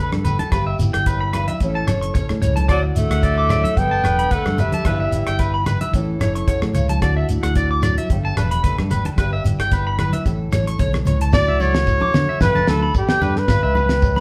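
A fingerpicked, boxy archtop guitar and a twangy, slightly broken-up electric guitar with a warbly pitch drift open this sunny highlife excerpt at 111 BPM in D major, joined almost at once by a round, punchy fingered bass, a damped 70s kit with a fat snare and tight kick, thick-skinned congas and a grainy shekere, while a dark, breathy trumpet with scooped notes leads from 2.7 seconds over a bright tenor saxophone second line and returns up front at 11.3 seconds, all in a live room with wet studio reverb.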